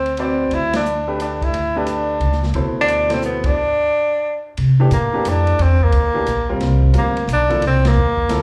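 A swinging waltz feel in three drives this brief cut from a longer modal jazz performance, its mood spiritual and hypnotic. The tenor saxophone carries the melody up front in a low, narrow range, its tone smooth on top with a light vibrato and a slapback echo. Beneath it, the pizzicato upright bass sits forward with a woody, thumpy gut-string sound. The acoustic drum kit stays lower in the mix, with dark cymbals, a boomy kick and a rolled-off top on hi-hat, ride and snare. A clear concert grand piano with deep bass and a vintage character comps behind the horn, also carrying a slapback echo, while the band hits accents at 0.7, 3.4 and 7.8 seconds. The harmony moves from D7 to G and settles on a C13 at 4.6 seconds. It all sounds like a live club gig heard through the venue's PA, with a moderate room reverb.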